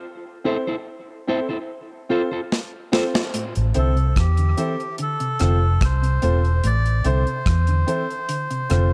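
Light reverb and a small room ambience surround this meditative, spacious dub reggae excerpt, cut from a longer piece. Set at 73 BPM in A minor with a straight 4/4 feel, it opens on a break where a clear, open baby grand piano plays stabs from 0.4 seconds, joined by an up-front electric guitar at the edge of break-up, both carrying dub echo. A deep reggae drum kit comes in with a fill at 2.5 seconds, acoustic and dry with a tight kick, a medium-tuned snare, hi-hat and rim click, and the slightly broken-up guitar soon stops. From 3.3 seconds a clean, dark electric guitar plays arpeggios through a phaser in the background, followed by a vintage foam-muted fingered bass that sits round and punchy up front. A reedy, breathy melodica with a nasal edge then carries the melody under dub echo, while the chords alternate between Am and F.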